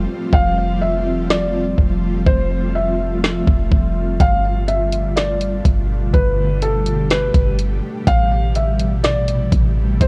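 Heard through worn, warbling cassette tape with a warbly pitch drift and digital ambience, this blissful, floating snippet of atmospheric cloud-rap at 124 BPM in a half-time feel opens on a mellow, ethereal pad, bathed in ensemble chorus, tremolo, reverb and sidechain pumping, over a deep, boomy sine-like 808-style bass, before a felt-muted upright piano carries an intimate, low-pass filtered melody, echoed by digital delay and showing audible action noise, and an up-front R&B drum kit with a knocking kick, woody snare and warm hi-hats both arrive at 0.3 seconds, all moving through Fmaj9, G9 and Am9 in F lydian.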